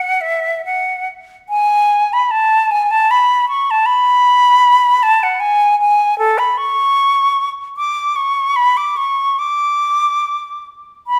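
Heard in a moderate scoring-stage reverb, this 11.2-second cut from a longer classical piece features a solo silver concert flute, bright and airy with soft attacks, expressive vibrato and a metallic sheen, sitting up front as it sings a yearning, lonely line in F# minor between A4 and D6, moving freely with rubato in 3/4 at around 68-80 BPM.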